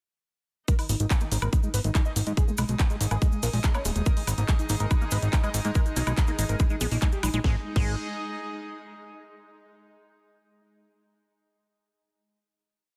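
A dense, heavily limited and dry mix carries this hypnotic psychedelic trance piece at 142 BPM in straight 4/4, built on an up-front four-on-the-floor electronic kick and a fat, saturated analog bass galloping in sixteenths. A tape-tinged garage kit adds programmed hats, a cracking snare, handclaps, crash and woodblock alongside grainy hand-played cabasa sixteenths. A squelchy acid line with accents runs a 3-step loop drifting against the bar under a filter sweep, and a thick, detuned unison lead repeats its riff over a pedal note with phaser, tape echo and pumping; meanwhile reedy gut-string chamber strings fade in beneath with slowly shifting chords, a bubbling stepped-filter drone surfaces from 4.5 to 7.5 seconds, and the strings hold a final chord until 9.1 seconds.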